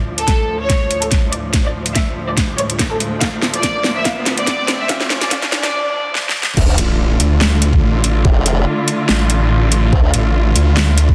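Heavy, menacing wobble dubstep in a half-time swing, cut from a longer piece: a reedy, gut-toned violin section carries the melody through dub echo over distant, bowed string-section chords that pump with sidechain, while a riser and impact sit in the background and a filter sweep and drum fills drive the build-up. A layered dubstep kit of huge snare, metallic hi-hats and crash cymbal, bathed in studio reverb, rides over a knocking electronic kick drum. The drop lands at 6.6 s as a detuned, formant-filtered wobble bass with chorus surges up front, joined at 6.8 s by a bright, growling sawtooth bass snarling with distortion, all of it pressed into a dense, heavily limited master.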